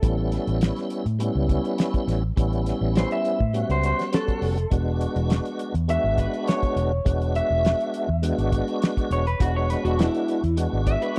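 A slightly broken-up electric guitar through a small old amp carries a clean, spring-reverbed solo over a lightly overdriven tonewheel organ with key click, chorus vibrato and slow rotary speaker, a round foam-muted fingered bass and a cloth-damped, thuddy drum kit with a fat snare and tight kick, giving this straight-eighth soul blues excerpt, moving from A9 to E9 at 4.7 seconds, a gritty, swaggering feel in a dry, close 1970s-style studio sound.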